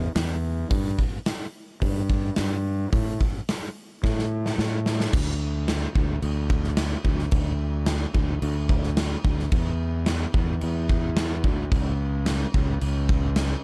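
A straight 4/4 pulse at 109 BPM comes from a gated 80s drum kit that enters at 0.2 s, with a tight kick, medium-tuned snare, hi-hat and bright crash cymbal ringing in an airy stone room, and a drum fill from 4.0 s leads into a new section at 5.1 s. Up front from the very start, a fingered electric bass growls and punches through fuzz and overdrive in the low register. This dreamy, hazy shoegaze and dream pop rock passage has a dark, warm production with little reverb and lossy compression artefacts.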